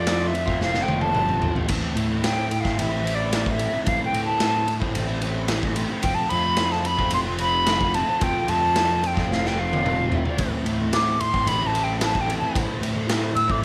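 Psychedelic rock in A minor at 111 BPM, dark and hypnotic, with an airy, vibrato-laden concert flute soloing over the whole passage through a slapback echo while a crunchy, double-tracked overdriven guitar riff with flanger and a round, fuzzy fingered bass move between F and A minor. A raw, saturated garage drum kit sits up front in a pumping stone-room sound, its punchy kick and gritty rolled-off cymbals breaking into fills at 0.6 and 9.3 seconds. Very quiet, low-tuned congas enter at 10.8 seconds, all set in light reverb and small-room ambience in this cut from a longer piece.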